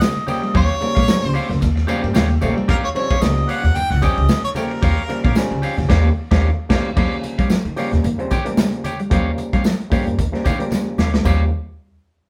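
A distant, punchy harmonica with light vibrato carries the melody of this energetic, strutting funk excerpt until it drops out at 5.6 s, over a swung sixteenth-note groove built on an Eb9 chord. A gritty, saturated breakbeat kit with a punchy kick and dark cymbals sits up front beside a woody pizzicato upright bass, while an overdriven auto-wah clav adds stringy stabs and a bright, clean picked guitar plays accompaniment. A dark, fingered guitar riff with spring reverb sits in the background, low-tuned congas and a jingly tambourine add quiet percussion, and the live-room band hits an accent before a drum fill at 10.7 s.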